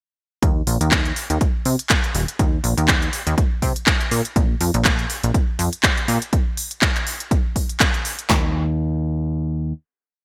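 A four-on-the-floor kick at 122 BPM, with a 56% swing on the 16ths, drives this groovy, funky filtered disco house piece: a dry, punchy analog drum machine supplies kick, snare and handclaps with gated reverb; a layered house kit adds crisp closed and open hats that pump with sidechain, plus claps of its own in gated reverb; and a plucky sawtooth-and-pulse analog bass plays a syncopated line from Eb1 to C3 under a sweeping low-pass filter and sidechain pumping, all in a lightly reverberant, bright 1980s-style digital mix, until the groove gives way at 8.3 seconds to a final bass note lasting to 9.7 seconds.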